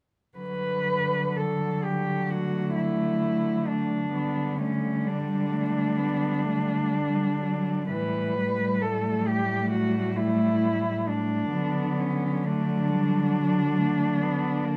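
Tender and warm, this short excerpt from a longer classical piece for cello ensemble moves at a slow, rubato 65 BPM in D major, with four muted cellos, each a single bowed player con sordino, sharing a dark, veiled colour. The melody cello sings from C#4 to B4 with vibrato, soft attacks and gliding portamento, while an accompaniment cello holds close to F#3–G3 and a bass cello with portamento anchors the harmony from A2 to D3. A second line joins at 2.3 seconds with light vibrato and a smooth top, and the close, detailed, nearly dry sound carries the harmony from D through G and A back to D.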